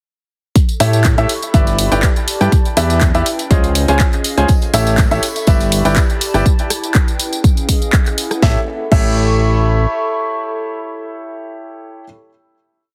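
Uplifting, joyful piano house at 122 BPM in A mixolydian, where a clear, intimate baby grand with audible action noise plays dotted-rhythm chords over a fat, detuned sawtooth bass, a punchy four-on-the-floor kick, a house kit of cracking snare, claps, rim and crash, a very quiet gritty looped breakbeat until 6.3 seconds, a background tambourine, and a warbling, nostalgic square-wave pad that pumps with the sidechain; a final A7 chord arrives at 8.4 seconds and rings on after the drums drop out at 9.1 seconds, all under a heavily compressed radio-like sheen.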